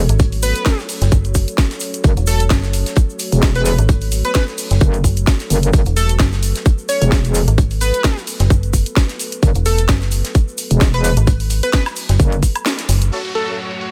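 Gritty and bouncy, this bass house drop rides a swung groove built on a tight, up-front electronic kick that sits at the front of the mix. Two metallic basses drive the low end, one wobbling, aggressive and saturated with chorus and overdrive, the other a dark, decaying digital FM tone thickened by tube saturation, both pumping with the sidechain. Above them a plucky, detuned unison lead carries a catchy, full-bodied hook through analog chorus and tape echo, while a deep, moody analog pad holds sustained chords under a sidechain pulse. A layered garage kit with a cracking snare and filtered hats, a grainy tube shaker in the background and a very quiet, rolled-off soul kit fill out the rhythm. The kick drops out at 12.7 s on a band accent, and at 13.1 s a mellow horn stab with light vibrato, a lush bowed string section and an electronic downlifter close the passage, which is cut from a longer piece.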